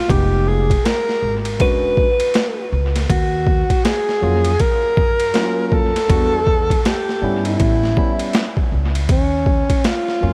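An echo-heavy mix with a dusting of vinyl crackle and a digital ambience frames this cool, mellow jazz-hop excerpt, cut from a longer piece and built on a swung boom bap groove. Up front, a breathy alto saxophone carries the solo melody in a close-miked, jazz-style subtone with vibrato, trailed by dub echo. Beneath it, a barky tine electric piano plays the accompaniment, lightly overdriven through a combo amp and also washed in dub echo, moving through chords such as Fm7b5, E13 and D#m9 before arriving at D#7(no3) at 9.1 seconds. A woody, warm pizzicato upright bass with steel strings holds the low end. The sampler-style drum kit sits up front as well, pitched down, compressed and gritty, with a thumpy kick, a high-tuned snare, hi-hat and ride cymbal, all overdriven and re-recorded in a large room.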